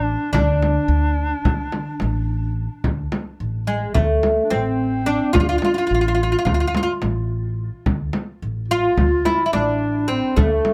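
Set in a straight 9/8 metre, this melancholic, longing passage from a Turkish makam ensemble is cut from a longer piece and shifts into a new section at 2.8 seconds. A woody, fretless oud plucked with a plectrum carries the melody up front, its double strings sounding deep, while a warm, jazz-style clarinet with vibrato adds a second line coloured by tape echo. A growly pizzicato upright bass on steel strings and a large, saturated frame drum played with soft hands from 0.3 seconds sit close and dry in the detailed, close-miked sound.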